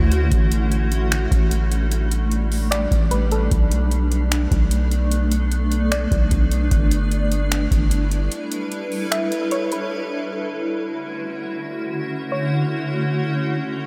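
Atmospheric cloud-rap in a floating, blissful half-time feel, where a blurred, evolving granular pad with sidechain pumping carries the chords throughout, a deep sine 808-style bass sustains beneath until 8.3 s, a booming analog drum machine with metallic hats and finger snaps sits up front before a short break, and a soft, dark pluck with chorus and analog delay drifts in the background in brief phrases, all soaked in a huge ambient reverb.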